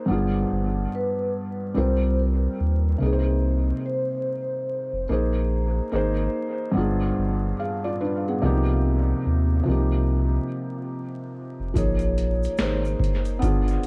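Nostalgic and reflective, this lo-fi hip hop excerpt moves at 72 BPM in 4/4 with a lazy swing on the sixteenths. A felt-muted upright piano carries the harmony from the start, its thick felt giving a soft, intimate tone with audible action noise, dulled by cassette tape character, a low-pass filter and dub echo. Beneath it a round sine sub bass sits up front, deep and sustained, while a vibraphone played with soft mallets floats a quiet melody from 0.9 to 5.1 seconds, ringing and metallic with a fast motor vibrato in a boxy small room, also filtered and echoed. The chords drift through G7b9, Cm7 and Abadd9 before turning to Bbm7 near the end. At 11.8 seconds a booming analog drum machine arrives with a deep kick, crisp snare, metallic hats and finger snaps, re-recorded in a large room, joined by a grainy egg shaker in the background as the vibraphone briefly returns. Vinyl crackle, light reverb and a dark, echo-heavy mix frame the whole passage.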